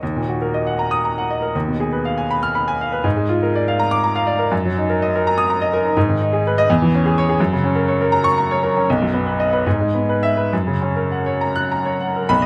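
Hopeful and passionate, this romantic character piece for solo piano unfolds in Eb minor with a free, rubato lilt in 6/8, moving at roughly 65-87 BPM in dotted quarters. A bright, brilliant baby grand sits up front with long sustain, ranging from B1 to F#6 as its harmony turns from Ebm through Bb7/Ab toward G#m, F# and B. Close, detailed microphones and light reverb give the natural tone a clear, intimate presence across this 12.5-second fragment cut from a longer work.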